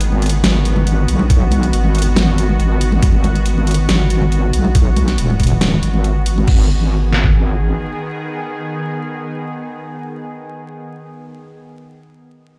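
Deep dubstep in a half-time feel, this brooding, cavernous fragment of a longer piece opens with a string-like drone holding a single minor chord, its tense, detuned sawtooth tone shaded by ring modulation, vibrato and built-in reverb, sustaining until 10.5 seconds. Underneath, a heavy, saturated wobble bass with a square-wave bite and chorus sits up front in the low register, ending at 7.7 seconds. An electronic dubstep kit supplies a huge layered snare, bright hats and crash, while bright acoustic congas sit close yet in the background, trailed by dub echo. From 1.3 seconds a gritty, pitched-down sampler-style kit joins up front with a thumpy kick and medium-tuned snare, compressed and tape-warm. The whole mix sounds as if played on a big sound system in a bare stone room, with vinyl crackle adding grain as the drums fall away and the drone carries the closing section.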